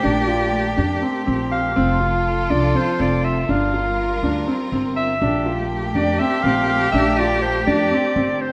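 From the first moment of this pensive, hypnotic excerpt of contemporary chamber music in 7/8, a clear, distant clarinet sings a jazz-style melody with vibrato and scooped notes over an expressive bowed cello line with portamento, lush, focused studio strings holding sustained chords, intimate, boxy grand piano arpeggios with audible action noise and woody pizzicato upright bass, the group sitting in a moderate concert hall reverb as the harmony moves from Bbmaj7 through F and Gm7 back to Bbmaj7.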